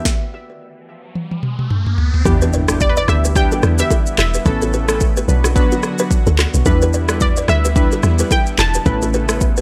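Dry, with little reverb, this sultry, mellow afrobeats clip in E dorian moves at 109 BPM with a swung 16th-note feel, opening over a drum stop and a drum fill as an electronic riser builds toward an impact at 2.3 seconds. From there a dark, punchy, woody log drum bass and a lush, thick unison pad in the background arrive as the chords cycle through Em7, Aadd9 and Bm, while a produced afro-pop kit with deep kick, sharp snare, handclaps, rim click, shaker and toms sits up front. Over this, a bright, warbling vintage analog pluck carries the melody with chorus and tape echo, round detuned analog keys with chorus and filter sweeps supply accompaniment, and a buzzing, ringing kalimba with tape echo repeats a riff in the background.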